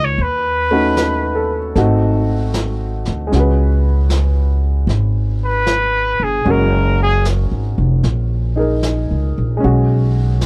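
A gently swung 4/4 carries this smoky, intimate jazz ballad excerpt, where a straight-muted trumpet takes a nasal solo full of vibrato and scooped notes until it drops out at 7.2 seconds, a brilliant upright piano with audible action noise comps up front, a thumpy gut-string upright bass plucks woody low lines, and a distant, roomy brush kit with a rolled-off top enters at 0.2 seconds, the recording carrying little reverb.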